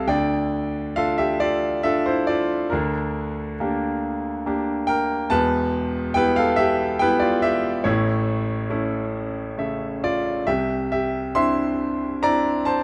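A brilliant concert grand piano, sitting up front with deep bass and close, detailed miking, plays a dark, melancholic classical passage in lyrical triple time with a free rubato feel, its chords ringing into a moderate recital-hall reverb across this 12.8-second fragment cut from a longer piece.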